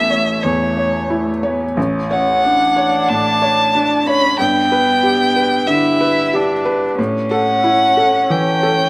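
The rhythm moves in a loose, rubato 4/4, with the pulse giving and taking as the phrases breathe. This short neoclassical piece for piano and strings, cut from a longer work, runs 8.9 seconds and carries a reflective, melancholic mood. A muted violin, a single bowed player con sordino, sings the melody up front with a dark, veiled tone and vibrato. Beneath it, a muted cello, also one bowed player, traces a second line with a soft attack and light vibrato. A felt-muted upright piano supplies the accompaniment, its thin felt lending a mellow, intimate, vintage character, over harmony that moves from A through Dmaj7/A and G to A7. A moderate plate reverb, with a 2.8-second decay, gives the trio a soft halo of space.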